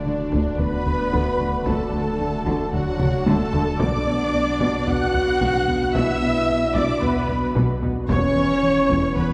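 A cinematic hybrid orchestral and electronic film score excerpt at 112 BPM in 4/4, relentless and vast, where a dark, woody violin section carries the melody over a softer second violin line with portamento, smooth violas accompany while a warm French horn section sustains chords beside a shimmering, retro pulse-width pad with chorus, a round analog bass riff, a clean sine sub bass and very quiet cello and double bass sections hold the low end, hard-stick taiko drums enter at 0.3 s and play a fill at 3.0 s, the harmony moves from D to Bm to E5, and a wet concert hall reverb sets the ensemble further back in the room.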